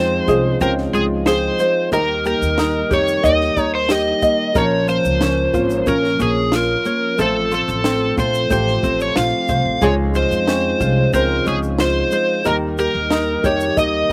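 An overdriven slide guitar, played up front with fingerpicks, carries the melody through this easy-going, heartfelt acoustic pop excerpt at 91 BPM in Eb mixolydian, over a light fingerpicked ukulele, a full-bodied nylon-string guitar playing arpeggios with finger squeak, a woody upright piano with slapback echo, and a round tonewheel organ holding sustained chords through a slow rotary speaker; a thumpy gut-string upright bass and a compact cocktail kit of punchy kick, high-tuned snare and shaker, entering at 0.3 s, complete the dry outdoor recording.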